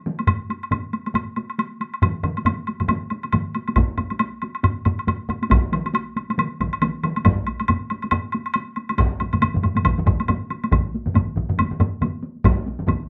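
Swung sixteenths in 4/4 drive this ceremonial, powerful Japanese traditional taiko excerpt, where a close hard-stick taiko group plays beside a dry heavy-stick taiko group and a woody, dry woodblock, both sitting up front, a compressed, saturated heavy-stick layer stays in the background, and another hard-stick taiko group with a live-room sound joins up front at 3.8 seconds, captured in a wet small room with a rough home-demo mix.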